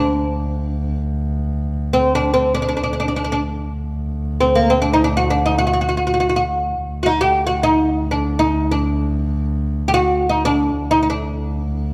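In this short passage cut from a longer Persian piece in free time, a woody, fretless oud plucked with a plectrum on double strings sings a passionate melody in D dastgah homayun, tuned to A4 = 435 Hz, over a pure, floating D2 drone from a single double bass bowed sul tasto with a soft attack, both held up front for the full 11.9 seconds within a moderate recital-hall reverb that gives the whole a warm glow.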